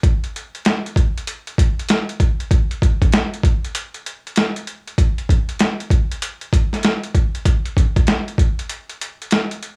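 Hip hop drums in a nocturnal, cool mood, cut from a longer piece, with a swung sixteenth-note feel in 4/4. A boom bap sampler-style drum kit carries the whole 9.8 seconds on its own, built from kick drum, snare drum and hi-hat. The kit is gritty and compressed, with a thumpy kick and a medium-tuned snare at natural pitch, and overdrive adds a rough edge. It sits up front, re-recorded in a small room so the room ambience surrounds every hit. Light reverb rounds out a close, gritty sound that suits a late-night beat.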